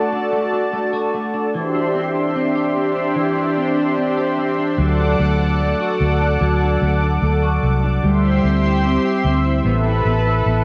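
Dream pop at 74 BPM in D mixolydian, this dreamy, floating excerpt opens with a thick, detuned sawtooth pad holding sustained chords alongside clean arpeggios from a semi-hollow electric guitar bathed in lush chorus and tape echo, before a dark, foam-muted fingered bass enters up front at 4.8 s, all set in a wet reverb with cassette tape colour on the pad and guitar as the chords move from D through C to C/D and Asus2.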